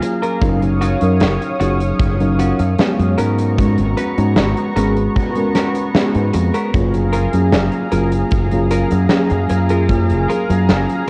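Faded and nostalgic, this short vaporwave excerpt drifts at 76 BPM in a straight 4/4, sitting in F# major with a slightly flat tuning. A mellow FM electric piano, round and soft with a noise layer and fast, decaying notes, carries the accompaniment through subtle chorus and tape echo, while a lush, detuned sawtooth unison pad holds thick, warbling chords with slow attacks and long releases. A clean, dark electric guitar plays a picked, compressed riff coated in lush chorus, tape echo and vintage 12-bit sampler grit, stopping at 10.5 seconds. Up front, a bright, punchy fingered electric bass with tube saturation enters at 0.4 seconds alongside a punchy kick drum set back in the mix, and a big-room rock kit puts its hi-hat and medium-tuned snare forward. The harmony moves from D#m9/F# to G#m11 and settles on F#maj9, all heard dry through a worn cassette sound with warbly pitch drift.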